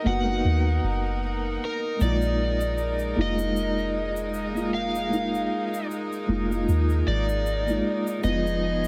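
A bright, overdriven slide guitar played with fingerpicks carries the melody up front in this hypnotic, smoky trip hop fragment at 77 BPM, its lines trailed by dub echo over a swung 16th-note feel. A felt-muted upright piano adds mellow, boxy tremolo accompaniment, and a rich chamber string section holds earthy bowed chords with light vibrato. A deep, round 808-style bass sits prominently beneath, and an egg shaker joins in the background at 2.0 s, all within a dry sound coated in vinyl crackle as the harmony moves from Bmaj7 through Bb7sus4 to Fm7b5.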